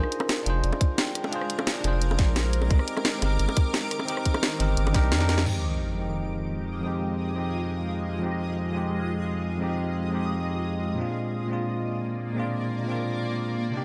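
This soulful, rolling liquid drum and bass excerpt opens at 174 BPM in F dorian with a bell-like tine electric piano, gritty with vintage 12-bit sampler character, filtered and trailed by dub echo, while a mellow vibraphone played with soft mallets sings a brief airy melody in the background. A deep, saturated sub bass and a layered garage kit with a cracking snare, crash, hi-hat and rim click drive the groove up front, joined by tight, high-tuned bongos tucked behind and a tight electronic kick from 0.8 seconds. A shimmering ambient pad drifts in almost at once, its detuned, granular chords coloured by chorus, phaser and an octave-up glow. The kick and vibraphone drop out just after the five-second mark, and a drum fill and band accent lead into a sub drop at 5.5 seconds, where the remaining drums, bass and percussion fall away. From there the electric piano and pad carry the harmony as the sub drop's impact fades, moving from Fm9 back to Bb7 through to 13.8 seconds.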